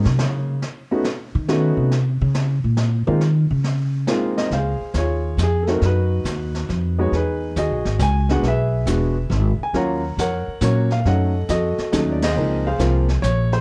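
A woody, up-front pizzicato upright bass on steel strings takes a solo over the first 4.5 seconds of this swinging jazz piano trio excerpt in a swung 3/4, the trio's rich extended chords giving a warm feel. A natural-sounding baby grand piano with short sustain carries the melody up close, while a distant, roomy brush kit with dark cymbals and a medium-tuned snare sits far back with a rolled-off top. The band hits an accent at 12.1 seconds, and light reverb rounds out the dark production.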